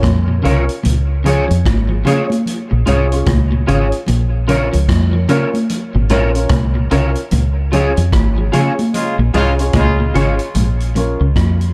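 A swung, hypnotic roots reggae groove rides on a vintage drum kit's tight kick, hi-hat and rim click alongside bright, high-tuned congas, while a round, foam-muted dub bass sits up front beneath clean picked guitar arpeggios, woody stabs from a boxy upright piano and a twangy, slightly broken-up guitar with chorus and dub echo, until a clear horn section with light vibrato and dub echo enters at 8.9 seconds as a second line during a band accent in this meditative, darkly produced excerpt from a longer piece.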